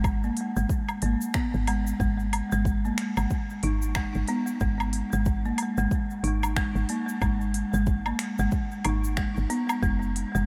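Earthy organic downtempo in G# minor at 92 BPM, with a swung 16th-note feel and tuning set to A4 = 435 Hz: a round, woody FM bass with tube saturation sits up front beside a deep electronic kick and a produced afro-pop kit of finger snaps, smooth hi-hat, shaker and woodblock, while a rustic folk marimba struck with hard mallets enters at 0.2 s, playing dark, percussive arpeggios through a delay over G#sus2, D#sus4/G#, G#m and F#sus2, and the mix is soaked in a huge ambient reverb lasting 7.6 seconds that lends it a dreamy haze.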